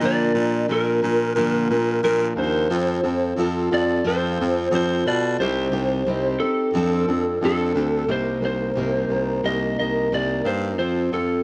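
A growling, raspy baritone saxophone sits close and up front, carrying the low line with vibrato beneath a lightly driven, slightly broken-up electric lead guitar that sings the melody, while a picked steel-string acoustic guitar fills in with finger squeak audible. This short cut from a longer folk rock and heartland rock piece moves at an easy 89 BPM in a straight 4/4, its reflective, wistful mood drifting through Bb, F and C minor chords before turning to Cm7 at 8.1 seconds and returning to F. Light reverb and a small-room ambience give it the intimate feel of a home cassette recording, with a tape character on both guitars.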